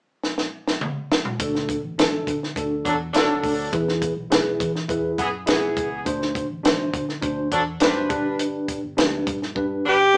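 A straight 4/4 groove at 103 BPM opens with a punchy, high-tuned cocktail drum kit fill from 0.2 s, then tine electric piano, lightly overdriven and worn, joins with a round, foam-muted electric bass on D at 1.4 s, a tight jazz-style horn section adds a second line from 2.8 s, and a breathy tenor saxophone touches a single G4 at the very end of this uplifting, uptempo 1960s-style soul fragment in D major, heard through a small-speaker live-room sound with wet reverb.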